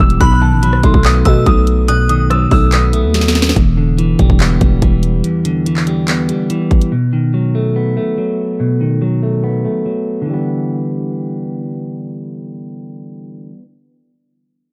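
A clean, picked electric guitar with a warbly pitch drift carries this eerie, menacing half-time trap fragment through to 13.6 s, its tone low-pass filtered and then swept through the middle stretch, while a growling, buzzy 808-style bass hits up front until 5.2 s and an electronic kit of hard-clipped kick, sharp snare, bright hats, handclaps and rim clicks pounds up front until 6.9 s. A dark, boxy concert grand piano with delay plays a high melody, and a faint, glassy FM synth bell with chorus glimmers behind it in the opening seconds, within a dark digital ambience.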